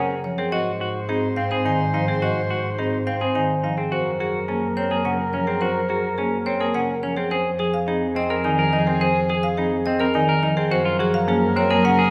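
A close-miked rosewood marimba carries the melody between Ab4 and Ab5, its medium hard mallets giving a bright, percussive, dry attack that sits at the front of this hypnotic, propulsive piece of minimalist classical pattern music. It moves at 106 BPM in a straight 3/4 in Gb lydian, cut from a longer work, with all five parts sounding together across the full 12 seconds. Beneath it, a second marimba with hardwood bars plays accompaniment in a low, rustic, mid-forward register. A clean, picked semi-hollow electric guitar spins arpeggios up front, while a clear soprano saxophone in classical style adds a quieter second line. A bowed double bass anchors the low end with a rich, focused tone and vibrato. The harmony shifts from Gbmaj9 through Ab7, Gbadd9 and Fm7 before returning to Gbmaj9 at 10.7 seconds, all heard from further back in a wet recital hall.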